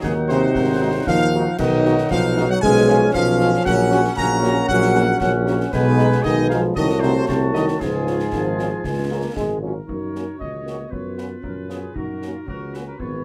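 This military-style march for wind band is a spirited, festive fragment cut from a longer piece, moving in a straight two-beat stride. A mellow trumpet section carries the melody with a soft attack and light vibrato, sounding close and tight. Beneath it, a dark euphonium sits in the background on a second line, while a woodwind section adds another second line from a distant, roomy position. The tuba is up front with a warm bass, and a horn section, entering at 0.3 s, fills in background accompaniment as the trombones hold sustained chords until 9.7 s. Concert snare, bass drum and clash cymbals give acoustic support with bright cymbals in a small room, and the whole band plays in a moderate, short booth ambience as the harmony settles onto the home chord in the brief closing section from 9.9 s.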